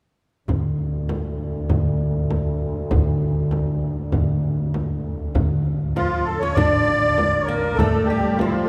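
Arabic maqam ensemble fragment in D maqam nahawand at 99 BPM, soulful and longing, where a thumpy pizzicato gut-string upright bass, a veiled, bowed, muted double bass drone on D2 that stops at 5.4 s, a very quiet clay-shell darbuka and a close, dry frame drum carry the opening from 0.5 s before a reedy, shimmering musette accordion up front and a bright, plectrum-plucked fretless oud on double strings enter at 6.0 s, the ensemble set in the long cathedral reverb of a church or concert hall.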